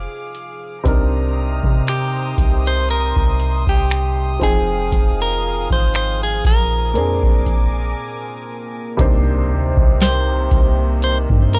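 A booming analog drum machine sets a slow, lightly swung groove from 0.3 seconds, its deep kick, crisp snare, metallic hats and finger snaps sitting up front with a vintage 12-bit sampler grit. This moody, longing contemporary R&B excerpt rests on a soft, round 808-style bass with a dark, decaying sine tone, under a worn baby grand piano with long sustain and a smooth, reedy studio string section holding bowed chords in a period style. A clean, picked electric guitar carries the melody from 1.9 seconds, warm and forward in the mix. After a brief break the harmony settles back on its home minor chord, and a very quiet electronic impact lands at 9.1 seconds, followed at 10.0 seconds by a delicate, bell-like celesta that rings softly in the background through an analog delay. The whole piece sits in a small, dry room with a gritty hardware character, and it is cut from a longer piece.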